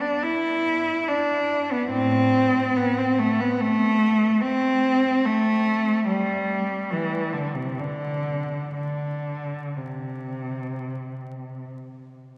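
A single bowed cello, rich and up front with soft attacks, vibrato and portamento, sings a lyrical, nostalgic line in C major at a free, rubato pace of roughly 50-75 BPM, ranging from A2 to E4 before it stops at 11.7 s, its tone carried into a cathedral reverb with a 4.2-second tail and heard from further back in the room beneath a vinyl crackle in this short excerpt cut from a longer classical piece.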